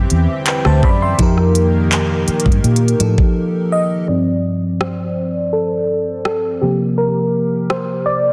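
Lightly reverberant digital ambience and a dense, heavily limited modern master frame this short contemporary R&B clip in G minor, moving at 83 BPM in a straight 4/4 with a late-night, longing mood. An up-front trap drum kit of knocking kick, crisp hi-hats, handclaps and rim clicks drives the groove, while a dark, round, foam-muted vintage electric bass sits low and close. A lush, dreamy FM electric piano with a soft pad layer carries the accompaniment through chorus and a low-pass filter, its fast attack decaying into airy noise. Beneath it, a shimmering, retro pulse-width pad holds slow-blooming, detuned chords with a sub-octave weight over suspended ninth harmonies. After a brief break at 3.4 seconds, the pad drops away at 4.1 seconds and the electric piano takes a solo, its tone shaped by a filter sweep as the drums carry on beneath it.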